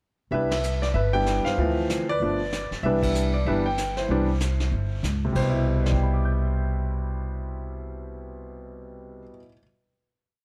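A swung 4/4 at 190 BPM opens this short, complete jazz piano trio piece in C major, playful and relaxed in mood, with the whole band hitting accents at 0.5 and 3.0 seconds. A vintage brush drum kit sweeps brushes across a medium-tuned snare, set against a punchy kick, hi-hat, ride and crash, with a rolled-off top and a small-room feel; it sits lower in the mix than the other parts and drops out at 6.0 seconds. The upright bass plays pizzicato in a two-feel, woody and growly with steel strings, standing up front. The concert grand carries a motif-based melody of call phrases over syncopated comping in rootless voicings, moving through Cmaj7, Dm7 and G7 before returning home. Its sound is clear, intimate and polished, with deep bass, long sustain and audible action noise, and it rings on through a held final chord to 9.6 seconds under light reverb.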